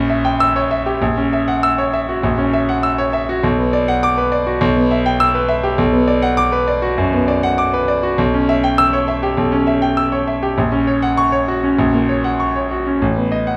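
Rubato shapes a 4/4 pulse around 100 BPM in this stormy, agitated classical piano study in B minor, cut from a longer piece. A solo concert grand carries the whole passage from 0.0 to 13.6 seconds, ranging from A1 up to E6. Its tone is clear and polished, with a deep bass and short sustain, placed up front and present. The harmony opens on an A#dim7 and F#7/A#, settles onto Bm at 3.4 seconds, moves through Em/B and C#m7b5/B, and ends on B7/A. A moderate large-studio reverb and a dark production colour the virtuoso writing.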